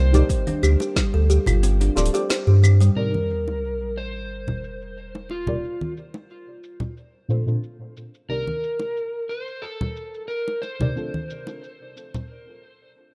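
Organic downtempo in C dorian at 90 BPM, this earthy, hypnotic excerpt opens with a woody, airy kalimba playing arpeggios and a round, up-front sub bass with sidechain pumping, both falling away by 3.0 seconds as a sub drop marks the turn into the next section. Throughout, a dark, slightly broken-up electric slide guitar carries the melody through tape echo, while deep, mellow chord stabs, soft and decaying with chorus, phaser, cassette tape color and pumping, move from D7(no3) and G9sus4 to Cm7, Bbmaj7 and Dm7. Underneath, an electronic afro-pop kit with a woody snare, metallic hats, claves and shaker runs under low-pass filtering beside bright, close and dry congas and bongos, a deep electronic kick appears only briefly near the start, and the rough, dry demo mix ends on a short break at 12.3 seconds.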